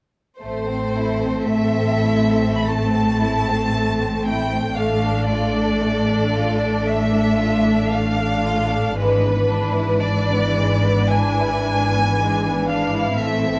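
At 0.4 s a chamber string orchestra enters together in a slow, rubato romantic movement, solemn and yearning, with the first violins carrying the up-front melody over a smooth second violin line and a distant, even viola accompaniment. Beneath them, a focused, close-sounding cello section sits in the background while the double basses add a bowed low foundation, each section rich with vibrato. Heard in a moderate recital hall through close, detailed microphones, this fragment of a longer piece moves from Am to Dm/A at 4.8 s and to E7/G# at 9.0 s.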